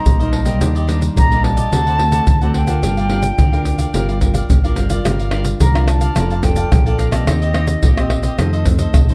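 Samba and choro in G minor at 108 BPM, this bittersweet, yearning excerpt has an airy, distant concert flute singing the melody with expressive vibrato and tongued notes, bathed in plate reverb and tape echo until 8.7 seconds. Beneath it, a crisp, bright picked cavaquinho and a fingerpicked classical nylon-string guitar move through chords such as Cm7, Ebmaj7, D7 and Gm7, while a round, punchy fingered electric bass anchors the low end. Up front, tube shaker, tight surdo, pandeiro and tamborim sound close and dry under soft hands, all within a dark, warm production with light reverb.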